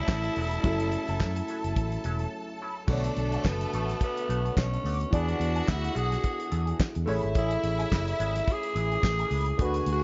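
A damped 70s drum kit sets a disco groove at 107 BPM, lightly swung on the sixteenths, with a fat snare, tight kick, dark cymbals and handclaps, while a round, punchy fingered electric bass sits up front beside it and a jingly tambourine plays very quietly underneath. The mood is danceable and glamorous in B dorian: a short break leads to a change from F#m7 to Bm9 at 2.9 seconds, and the harmony continues through E7 and Amaj7. A raspy, gritty tenor saxophone carries the melody up front with light vibrato, its distant, roomy tone played in a pop style. A clear studio string section adds a focused, bowed second line with vibrato, while a dark French horn section holds sustained chords in the background. Further back, a worn concert grand piano with deep bass and short sustain and a twangy, compressed electric guitar through an envelope filter fill out the accompaniment, set in light reverb with a dulled top end and a faint mains hum.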